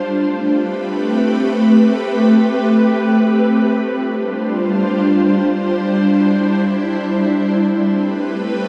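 An airy, detuned pad plays alone through this short hip hop fragment in free time, its slow attack and long release giving sustained, mellow chords in A minor that move from Am9 to G7sus4 at 3.8 seconds and back to Am9 at 7.6 seconds. Ensemble chorus and a diffuse ambient delay thicken the sound, and the pad sits up front in a lush hall reverb, so the mood is spacious and dreamy across its 8.7 seconds.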